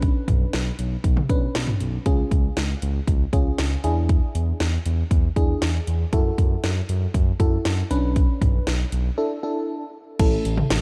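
Cool and driving, this synth-pop excerpt moves at 118 BPM in a straight 4/4, cut from a longer piece and set in a dark production with light reverb. A punchy, up-front house drum kit with cracking snare, metallic hats, crash and toms runs alongside a smooth sawtooth-and-square synth bass that glides with portamento, while a soft, round FM electric piano treated with chorus and phaser colors chords moving from Bmadd9 through C#, E7 and F#m7. A brief break arrives at 9.2 seconds on E7sus4 before the harmony lands on A at 10.2 seconds.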